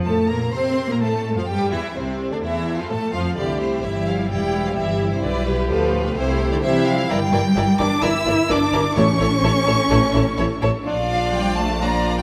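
A wet scoring-stage reverb with a 1.7-second tail surrounds this brief cut from a longer quick, classical-period movement for symphony orchestra, tuned to A4 = 444 Hz and moving at 128 BPM in a straight 4/4. The mood is dramatic and urgent. The first violins carry the melody high in their range with rich, smooth vibrato, while the second violins trace an even, bowed second line beneath them. The violas supply focused accompaniment, and the cellos give the bass a warm, expressive quality with soft attacks and touches of portamento, alongside an intense, clear double bass section that sits up front. The harmony moves from F and C through G7/B and Em7b5/G toward A and finally Bb. From 9.0 to 9.6 seconds, timpani played with medium mallets add a brief, close but background figure on A2.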